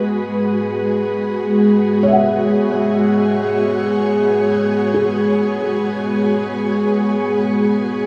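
In free time, this serene ambient excerpt in E major rests on a single Eadd9 chord: an airy, detuned pad holds sustained chords up front, colored by its ensemble chorus and built-in reverb, while a felt-muted upright piano plays soft, dark arpeggios in the background through a diffuse ambient delay, its action noise audible, inside a wet shimmer reverb lasting 8.8 seconds.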